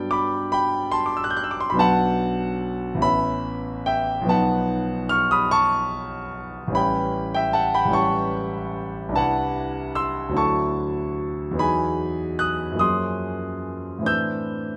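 A clear concert grand piano sits up front in a large studio, bathed in a moderate reverb that lets each chord bloom into the room. This is a short excerpt of classical, impressionist solo piano, hazy and luminous in mood, moving in 6/8 with a free, rubato feel. The piano alone carries the music from 0.0 to 14.8 s, spanning A1 to G6, with a deep bass and a natural, long sustain. The harmony drifts through rich extended chords, from Gmaj9 and Bm7 to a B7#11 at 4.3 s. A rising chain of major ninth chords, from Cmaj9 through Dmaj9 and Emaj9 to F#maj9, then gives way to an Am11 at 14.1 s.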